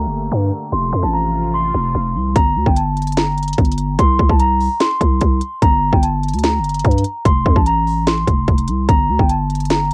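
Muffled by a lo-fi cassette haze and light reverb, this brooding, hard-hitting trap excerpt in G minor runs at 147 BPM with a half-time feel, opening with a filter sweep while a detuned, resonant pad holds chords until 2.3 seconds. A bell-like large celesta carries the high melody up front as a growling, buzzy 808-style bass anchors the low end, moving over Gm(add9) and F chords. At 2.4 seconds the trap drum kit arrives up front with a hard-clipped kick, sharp snare and crisp hats.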